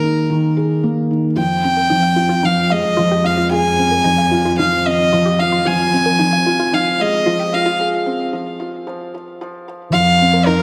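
Hypnotic and cinematic, this piano and strings electronica excerpt at 112 BPM opens with a soft, thick-felt upright piano riff up front beneath a reedy, gut-string solo violin melody with delay, then at 1.4 seconds a lush, detuned sawtooth pluck with a filter sweep and delay arrives in the background alongside a bowed cello section with vibrato holding the bass, building through a break at 7.8 seconds, all set in a wet scoring-stage reverb.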